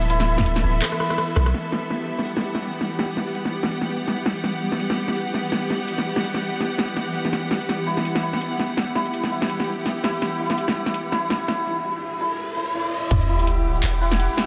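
Half-time drum and bass at 166 BPM in E minor, this dark, tense excerpt from a longer piece sets lush, vibrato-rich symphonic strings pumping against a shimmering hammered santur arpeggio with analog delay, a deep sine 808-style bass and tight layered kick that hit at the opening drop and return with the impact at 13.1 seconds, a woody-snared electronic kit with metallic, low-pass-filtered hats and percussion, a detuned triangle texture pulsing in the background from 2.0 seconds, and a riser and sub drop from 11.6 seconds, all soaked in a dreamy, huge ambient reverb.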